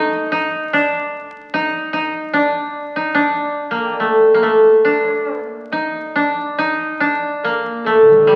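A ringing concert harp carries the melody in this short fragment of Japanese chamber music, its fingerpicked lines spanning A2 to G6 from the very first second to the end at 8.4 seconds. Beneath it, a koto played with fingerpicks supplies a second line in a narrow band from G3 to Eb4, its dry, woody tone sitting up front in the mix. The mood is calm and austere, moving in a loose, rubato 4/4 around 73 BPM in D miyako bushi. A new section arrives at 6.6 seconds and runs briefly to the close. The harp blooms in a wet recital hall, while the whole recording carries the vinyl crackle and aged patina of a very old 78 rpm record.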